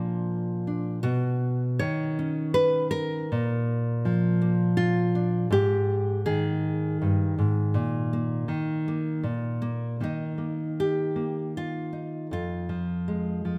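A bright, up-front nylon-string guitar rings out in a concert hall, its notes trailing into a moderate, lingering reverb. This short folk excerpt, cut from a longer piece, features the fingerpicked classical guitar playing entirely alone in an unhurried three-beat metre with a straight feel. The mood is hopeful and pastoral, with the opening passage moving through Bb, Badd9, Ab5 and Bbsus4 before reaching an unharmonized moment at 9.2 seconds. At 10.0 seconds a new section begins, opening on Ebadd9 and turning to Fm as the fragment closes at 13.6 seconds. The guitar spans a range from F2 up to C#5, giving the solo part both low resonance and clear upper voices.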